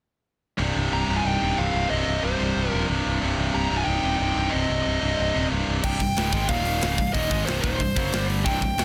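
A dark, heavy metal passage opens at 0.6 seconds with two distorted rhythm guitars and a picked electric bass driving a low riff together. The tight guitar sits up front, while the high-gain one stays in the background, and the bass comes through bright, direct and growly. At 0.9 seconds a smooth overdriven lead guitar enters with a dusky melody high above the riff, joined by a dark high-gain second line placed further back in the mix. That second line drops away at 5.5 seconds, and a polished acoustic drum kit arrives at 5.8 seconds, with a tight kick, a medium-tuned snare, hi-hat and shimmering crash cymbals pushed up front in an airy, big-room sound. Light reverb and a small room ambience surround the parts, and the dense, heavily limited modern master keeps this cut from a longer piece sounding full and forceful.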